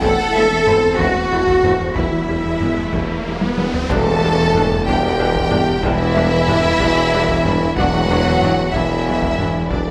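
Drenched in a lush scoring-stage reverb, this relentless, vast excerpt from a hybrid orchestral and electronic film score moves at 62 BPM in 6/8 in E minor, with two vibrato-rich violin lines carrying the soft-attack melody and a smooth-topped second part, a very quiet, close viola section adding accompaniment, and mellow French horns holding vintage-toned chords, while a ringing, harp-like synth pluck traces faint chorused arpeggios, a very quiet smooth synth bass plays a riff, and a low foundation comes from a clear tuba, even cellos, a menacing, saturated detuned saw bass and distant double basses with portamento, all driven by hard-stick, compressed taiko drums whose fill from 3.4 s rides the close of an electronic riser that begins at 1.9 s, landing on an impact at 3.9 s as the harmony shifts from Am/E through Em and Em7 to D/E.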